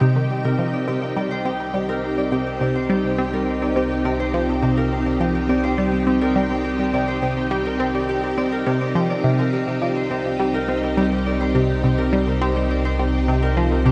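Drenched in a long cathedral reverb, this mysterious, hypnotic stretch of sequencer-driven space music, cut from a longer piece, sits in a vast, echoing space with a rolled-off top, moving in a straight 4/4 at 104 BPM on a single C minor chord, tuned to A4 = 436 Hz. Up front, a nasal sawtooth analog pluck with a noise layer and fast filter snap repeats its riff through chorus, phaser and delay, beside a lush, vintage string machine holding full sustained chords with a sub octave and ensemble chorus. Further back, a fingerpicked concert harp rings out delayed arpeggios and a deep, round triangle-and-sine bass sustains a low C for the full 13.9 seconds.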